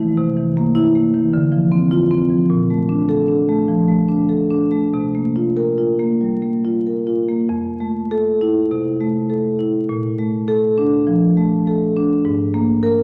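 Warm and playful, this 13-second excerpt of a contemporary classical piece for solo marimba moves with a rubato feel at around 92-105 BPM in F major, the medium-mallet marimba sitting up front across its low-to-middle register from F2 to Bb4, with chords drifting from C7 through Bbmaj7 to an unexpected Absus2 near the close, all bathed in a recital hall's wet reverb and a layer of vinyl crackle.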